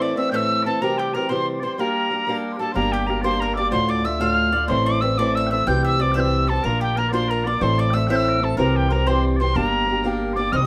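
An airy wooden whistle leads this wild, driving Celtic jig, sitting up front with a soft attack and vibrato as it carries the melody. The tune moves in 6/8 at 124 BPM in G dorian with a straight feel, its chords shifting among Am, C, Gm, Dm and Bb. Behind it, a bright bowl-back mandolin with picked double strings and a mellow, sweet small bagpipe share a second line, both set back in the mix. A boxy fingerpicked acoustic guitar with a swing feel provides up-front accompaniment, finger squeaks audible. A dark, woody upright bass joins at 2.8 s, played pizzicato on steel strings, and moderate studio reverb gives this clip, cut from a longer piece, a modest sense of room.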